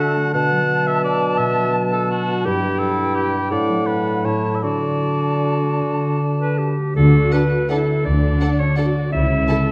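Elegant and sweeping, this rubato classical passage in 3/4 and D major moves at 144-184 BPM, opening with a bright clarinet, a pure-toned silver flute and an up-front cor anglais carrying second lines over mellow bassoon accompaniment and ringing harp arpeggios. As the flute, cor anglais and bassoon fall away, the clarinet and harp continue while at 7.0 seconds dark violas with portamento, a woody cello section and an up-front double bass section enter. From 7.3 seconds two violin sections add a background melody and a lush second line, heard in a recital-hall reverb with a dark, warm production.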